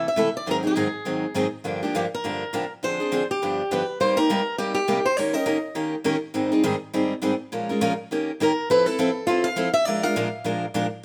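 A boxy, fresh-stringed swing-style acoustic guitar carries the melody up front in this fiery, swinging jazz fragment, playing from the start until 5.8 seconds and returning at 8.4 seconds. Beside it, a bright steel-string acoustic guitar with a concert tone picks the accompaniment throughout, moving through seventh chords such as Ab7, Gm7 and Cm7 before settling on Fmaj7 and Bb7. Light reverb gives both guitars a touch of space while keeping the swung eighth-note feel close and lively.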